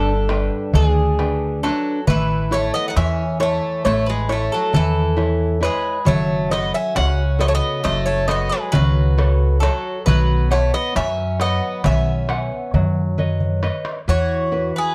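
Two Greek bouzoukis, a nylon-string guitar and an upright bass sound together from the first moment, and a darbuka joins a fraction of a second later in this calm, tender Greek folk excerpt. It moves at 135 BPM in eighths through a straight 9/8, tuned slightly low to A4 = 438 Hz. The lead bouzouki carries the melody up front with a bright, metallic, double-strung picked tone. The second bouzouki plays a lower line beneath it, while the fingerpicked guitar gives a small, dark accompaniment. The pizzicato gut-string bass sits prominently with a woody, thumpy sound, and the crisp, high metal-shell darbuka rings in a live room before a drum fill at 13.2 seconds. The harmony passes from G through A, F#m and Badd9 to Esus2, all captured by close, detailed microphones with light reverb.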